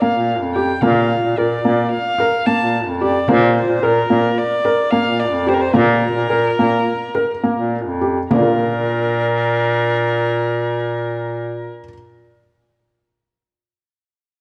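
Set in an uneven 9/8 with lopsided beats, this hopeful, restless contemporary chamber piece, cut from a longer work, carries a rich, gut-string violin melody with light vibrato over soft arpeggios from a felt-muted upright piano with audible action noise and a bright, vintage bass clarinet line, while a small frame drum plays very quietly from 0.5 to 8.6 seconds, all wrapped in wet scoring-stage reverb and warbling old cassette tape, as the music slows from 3.8 to 8.3 seconds before a contrasting passage.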